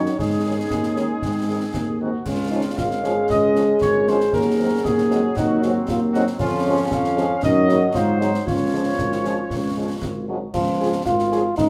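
A rousing, spirited military-style march for wind band in Db major, moving at 116 BPM in a straight 2/4, heard as a short cut from a longer piece. A dark trumpet section carries the melody with light vibrato and a smooth top, while a clear euphonium sings a second line, a present French horn section fills in accompaniment, and a distant, roomy trombone section holds tight sustained chords until 10.2 s. A mellow tuba anchors the bass, and concert snare drum, concert bass drum and clash cymbals with dark cymbals drive the march in a moderate large-studio reverb.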